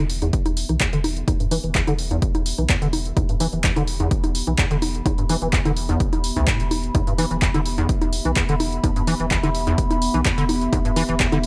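Trippy and hypnotic, this short acid house cut sits on E minor at 127 BPM in a straight 4/4, with a squelchy, resonant square-wave acid bass riffing through a filter sweep across the whole 11.5 seconds, roughened by tube saturation, chorus, 12-bit sampler grit, digital delay and sidechain pumping. Beneath it a deep, round sine sub bass holds the low end in the background, while a warbling, nostalgic lo-fi pad, detuned and wave-folded with ring modulation, chorus and its own reverb, drifts darkly above. An overdriven analog drum machine sits up front with congas, handclaps and hi-hat from 0.1 seconds, joined by a punchy overdriven electronic kick from 0.3 seconds, all in a dry, close sound.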